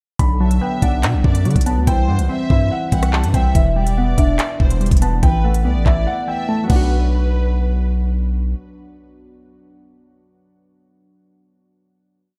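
A half-time drill beat at 143 BPM, with a knocking kick, crisp skipping hats and fast hi-hat rolls, handclaps, rim clicks and crash, drives this cold, ominous hip hop piece in B phrygian, where deep, sliding 808 sub-bass notes follow the kick, a dark, mellow, boxy grand piano loops a high melody, glassy, detuned digital keys with chorus play a rising eighth-note arpeggio until 12.4 seconds, and a smooth bowed violin section adds a sparse, delayed counter-melody, before a break at 6.1 seconds leads into a final hit on Bm.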